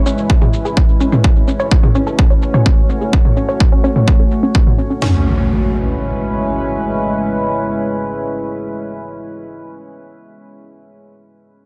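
This melodic techno cut is driving and cinematic, moving at 127 BPM in a straight 4/4 in C# minor, and it opens on a C#m7 chord before shifting to F#m. A deep, moody pad of detuned sawtooth and sine layers with a sub octave holds sustained chords up front, slow to bloom and long to fade, softened by chorus and built-in reverb and pumping against the sidechain. Over it, a lush, punchy unison pluck runs arpeggios through a digital delay, with a filter sweep shaping its sawtooth bite. A layered electronic techno kit drives the groove with a punchy kick, a cracking snare and toms, while a filtered electronic shaker and toms fill in beneath, both kits re-recorded in a small room and swept by a filter. At 5.0 seconds the drums and pluck drop away, an electronic impact lands on the return of C#m7, and the pad carries on to 9.2 seconds in a dense, heavily limited master with light reverb.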